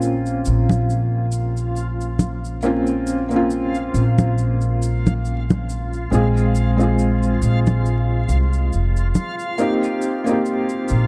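Trip hop in Bb dorian at a slow 69 BPM with a light 16th-note swing, this brooding, smoky piece is cut from a longer work and moves from Bbmadd9 through Fm/Bb to Cm7/Bb. A felt-muted upright piano sits up front with a soft, boxy, intimate tone, audible action noise, tremolo and tape echo. A woody, pizzicato upright bass with tube saturation and bright, dry egg shaker and hard-hand congas play alongside it. From 0.8 s, a quiet reversed, detuned, granular texture swells dreamily in its own reverb, all wrapped in a dark production with vinyl crackle.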